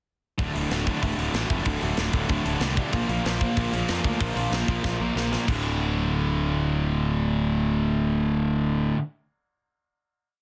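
Urgent and raw, this short punk rock piece is driven by two bright electric guitars, one overdriven and one distorted and compressed, pounding out eighth-note power chords on D5 and Bb5 over a round, punchy fuzz bass playing its own driving eighth notes. A tight, up-front acoustic metal kit with a medium-tuned snare and a soft-clipped kick keeps a fast punk groove, throws in a fill at 4.8 seconds and drops out at 5.6 seconds as the band holds a final D5 chord. The sound is dry, dense and heavily limited.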